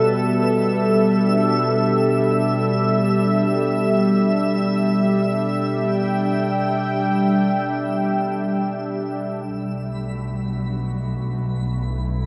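A smooth, detuned sawtooth pad sits up front in this melancholic, reflective ambient passage in free time, holding soft-attack Em7 chords under an evolving, pulse-width-modulated analog drone and a twinkling granular texture with an octave-up shimmer, all bathed in a huge, wet reverb. At 9.5 seconds the harmony moves to Bm7 as a warm, bowed double bass section enters with even vibrato, and the drone drops out at 9.6 seconds. A mellow, very quiet flugelhorn, heard only fleetingly at the start, returns as a distant, roomy solo with light vibrato at 10.0 seconds in this fragment cut from a longer piece.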